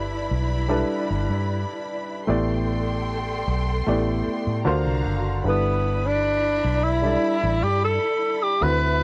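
Opening together, a distant, lush string section with portamento, a mellow grand piano with audible action noise, and a round, foam-muted electric bass set up this romantic, dry, close-recorded 1970s-style soul excerpt at 76 BPM in G major over G69, A7sus4 and D7alt chords, until a breathy, whispered tenor saxophone with scooped notes enters up front at 5.5 seconds to carry the melody.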